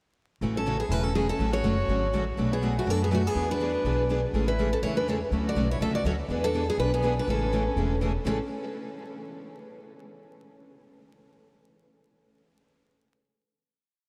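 At 0.4 s a brisk, charming jazz manouche groove in A major at 245 BPM opens with a four-to-the-bar rhythm guitar cutting short, accented chords on two and four, a very quiet second rhythm guitar and a pizzicato upright bass playing woody, thumpy two-beat root and fifth lines with walk-ups on dark gut strings. At 0.6 s a bright, fresh-stringed lead guitar with finger squeak and tape echo joins, spinning lively motif-based sentence phrases. A boxy bowed violin with vibrato and tape echo enters with it, shadowing the melody mostly in sixths. They move through A6, Dmaj7, Bm7 and E7 changes inside a dreamy mix soaked in huge ambient reverb and vinyl crackle, and land on a final chord at 8.3 s.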